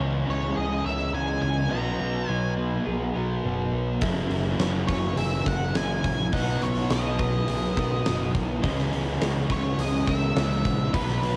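A straight 4/4 pulse carries this blissful, wistful shoegaze and dream pop excerpt, where a dark, distorted octave-fuzz lead guitar sings its melody through analog delay from 0.3 seconds over riffs from a crunchy overdriven guitar with reverse reverb and a thick fuzz guitar with lush chorus, both sitting in the background with cassette tape grit. A growling, overdriven picked electric bass anchors the low end, while a very quiet, twangy twelve-string electric guitar picks bright, clean arpeggios and a blurred, evolving granular cloud pad holds slow-attack sustained chords moving from C#m9 through Bmaj7 and F#7sus4. At 4.0 seconds a huge arena drum kit enters up front with a fat snare, punchy kick, hi-hat and a pumping hall sound, all captured as a lightly reverberant home recording on cassette.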